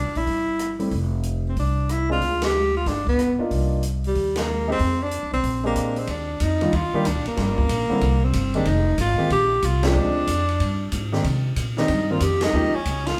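A close-miked tenor saxophone carries the melody from the first moment, joined at once by a woody, growly pizzicato upright bass, both sitting up front in this late-night, swinging excerpt of small-group swing and bop. The saxophone has a warm tone with a light vibrato, while the bass has the bite of steel strings. The acoustic drum kit arrives almost immediately, sitting lower in the mix, with dark cymbals, a medium-tuned snare and a boomy kick, and its hi-hat, ride cymbal, rim clicks, snare and kick all sound natural in a small room. A grand piano enters at 0.8 seconds with intimate accompaniment and audible action noise, moving through extended chords. The band plays live together in one room under a moderate large-studio reverb, hitting shared accents along the way, and a new section begins at 6.1 seconds before the piano drops out at 12.7 seconds and the others play on to the cut.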